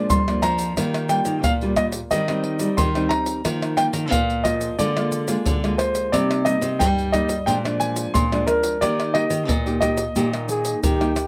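Samba and choro in Eb major at 89 BPM, this playful, sunny fragment from a longer piece sets a polished, present grand piano melody over fingerpicked classical nylon-string guitars, one supplying accompaniment and the other a full-bodied bass line. Egg shaker, tight surdo, pandeiro and tamborim sit up front, close and dry and played with soft hands, while a moderate studio reverb adds a little space as the harmony moves from Bb through Ebadd9, Cm7 and Bb7 to settle on Eb. At 10.5 s a mellow, close-miked trombone slips in with a brief jazz-style second line touched with vibrato.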